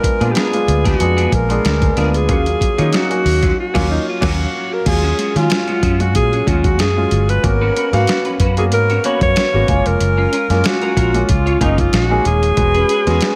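A smooth, vibrato-laden alto saxophone carries the melody up front in this upbeat, urban slice of polished 1980s jazz-funk pop, over a gritty, overdriven sampler-style drum kit with a thumpy kick and gated reverb, a dark, round, foam-muted fingered bass, a present grand piano with short sustain and subtle chorus, and a bright, twangy clean guitar riff sitting in the background, with a band accent from 3.6 to 4.9 seconds before rich minor-eleventh chords open the second part.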